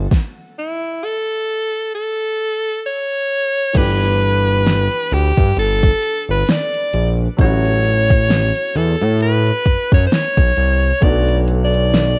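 Contemporary R&B with a late-night, longing mood: an up-front, overdriven electronic drum kit with a soft kick, fat snare and metallic hats sits against a smooth sawtooth-and-square synth bass that glides between sustained notes. A warm baby grand piano stays in the background, while an edgy alto saxophone enters at 0.6 seconds to carry the melody, forceful and punchy with light vibrato and scooped notes. The home cassette sound dulls the highs, and the chords move from G69 at 3.7 seconds through F#m7/A to Bm7.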